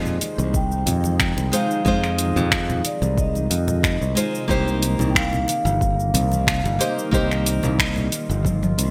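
A bright, growly fingered electric bass sits up front in this smooth sunset chillout excerpt in F minor at 91 BPM, with a light swing on the sixteenths, moving from Fm7 to Cm7 at 4.5 seconds. A ringing, metallic vibraphone played with medium mallets and motor off carries the melody through digital delay, while a fingerpicked classical nylon-string guitar with audible finger squeak and its own delay adds accompaniment, and a shimmering, ethereal pad with chorus holds mellow sustained chords in the background. An overdriven R&B kit of finger snaps, warm hats, shaker and toms with gated reverb stands forward, joined by a soft overdriven electronic kick from 0.5 seconds and very quiet, dry congas, before a drum fill at 8.5 seconds, all within a bright 1980s-style digital production and lush hall reverb.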